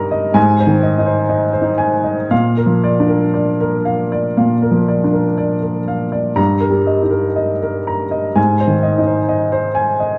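An upright piano opens this brief excerpt of a romantic character piece for solo piano, its woody, natural tone placed up front with a long sustain. The mood is hopeful and passionate, unfolding in 4/4 at a slow 57-66 BPM with a free, rubato feel. The piano spans G2 to Bb5 and moves through Ab, Bb and Eb/G before settling back on Ab at 8.4 seconds. A wet recital hall reverb surrounds the instrument, and the overall production is dark and warm. The piano is tuned to A4 = 442 Hz, and the passage ends at 10.2 seconds, cut from a longer piece.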